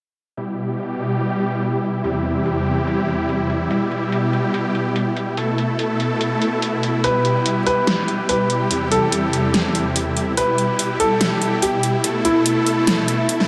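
Heavy wobble dubstep in a menacing, half-time swing, where huge, detuned supersaw chords and a layered electronic drum kit with a huge snare and metallic hats sit up front under filter sweeps from 0.4 seconds, a dark, worn grand piano with audible action noise and digital delay carries the melody from 7.0 seconds, and a background electronic swell arrives at 13.1 seconds, all bathed in a lush hall reverb.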